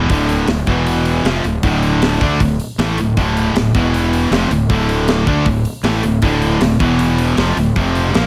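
Heavy metal in D minor at 157 BPM, this aggressive, heavy excerpt is cut from a longer piece and runs just over eight seconds in a straight 4/4. Two high-gain distorted guitars and a double-tracked overdriven electric guitar play riffs from D2 to D4, all picked and bright, and sitting in the background of the mix. Up front, a fuzz fingered electric bass with overdrive delivers a growly, direct-and-amped low end from D1 to D2. A tight metal drum kit of hi-hat, kick drum and snare drum enters at 0.1 seconds, with a high-tuned snare, a tight kick and a rolled-off top heard in a studio room. The harmony moves from D5 through E5 and back to Dm in repeating cycles, closing on F5 at 7.8 seconds, all under a light reverb.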